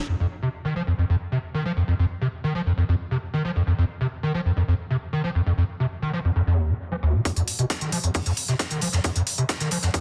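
Intense and dark, this driving peak-time techno cut runs at 134 BPM in a straight 4/4, tuned slightly below standard pitch. An overdriven acid bass carries the riff from the opening, squelchy and gritty with a resonant square-wave filter pluck, distorted and up front, thickened by ensemble chorus, tape echo and sidechain pumping as a filter sweep moves across it. At 7.3 s the drums arrive together as a build-up begins: a heavy, tape-warm electronic kick placed up front, smooth layered electronic hi-hats, and a gated 80s kit with a medium-tuned snare and airy hats in a bright stone room, its hats pumping against the sidechain. The acid bass keeps sweeping through this second stretch to the end at 10.0 s. A moderate plate reverb adds space, and the dense, heavily limited master carries a faint mains hum beneath the mix.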